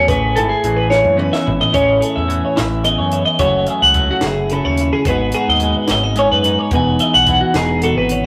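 A pair of bright, twangy twelve-string electric guitars sits up front in this short excerpt of intricate, wistful math rock and midwest emo, one playing arpeggios in a higher register through spring reverb while the other supplies the accompaniment beneath it. The tempo is 72 BPM in 6/8 with a straight feel, and the harmony stays in A lydian, moving from Amaj7 through F#m7 and G#m7 to Emaj9. An overdriven picked electric bass adds a dark, round, punchy low end, while a compact cocktail drum kit with a high-tuned snare, tight kick, hi-hat and toms plays in a natural, tight booth sound. A drum fill from 0.9 to 1.7 seconds leads out of the brief opening passage into the longer section that follows. The whole thing has the rough feel of a rehearsal-room recording, with moderate small-room ambience around the band.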